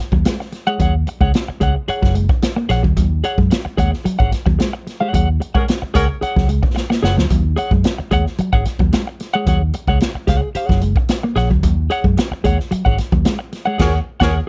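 A clean, picked electric guitar with harmonic tremolo opens this driving funk excerpt at 111 BPM in Eb minor on an Ebm7 chord, soon joined by a dark, fingered second guitar riffing through spring reverb, a round, punchy foam-muted bass, and a roomy, distant drum kit with a boomy kick and rolled-off top, while a softly vibrato-tinged horn section with slapback echo adds brief lines at 5.5 and 13.8 seconds amid band accents and a drum fill at 6.8 seconds.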